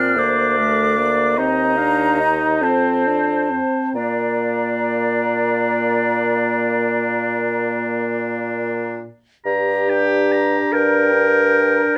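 Classical slow romantic movement for wind quintet in Bb major, tender and serene, unfolding in a rubato 12/8 at 42-51 BPM in dotted quarters, cut from a longer piece. A close, hollow, mellow flute with vibrato carries the melody high above a clear, up-front oboe second line with its own vibrato, while the horn and a smooth-topped clarinet fill in the accompaniment and a warm bassoon with light vibrato holds the bass. Under light reverb the harmony moves from Bb through Cm/Eb and F, then turns to G minor at 9.5 seconds as a new section begins.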